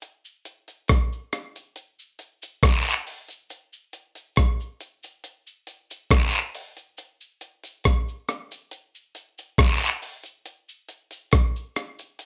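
Meditative and serious, this reggae excerpt moves at an unhurried 69 BPM in 4/4 with a straight feel. A breakbeat sampler-style drum kit carries the groove for the full 12.3 seconds, its hi-hat, rim click and thumpy kick sounding compressed, pitched up and gritty, placed up front. Cabasa and guiro play throughout as well, their part also bringing in tube shaker and group handclap sounds, its acoustic tone captured in a small room and also sitting up front, a little beneath the drums. The whole passage stays within a single section, cut from a longer piece. Light reverb and a rough home demo mix give it a loose, unpolished character.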